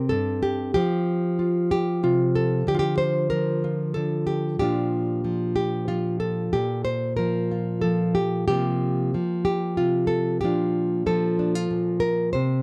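A lone nylon-string guitar opens on a C5 chord, fingerpicked in a classical folk style and set up front in an intimate, melancholic space. The guitar sounds bright and full-bodied, moving through Fsus2 and Dm7 before settling on a long stretch of Bb. In 6/8 with a straight feel, the solo part spans from G2 up to C5, turning to Fsus4/C at 8.5 seconds and back to Bb at 10.4 seconds. A moderate studio reverb lends a short halo, while the overall production leans dark and warm. This passage, cut from a longer piece, runs 12.6 seconds.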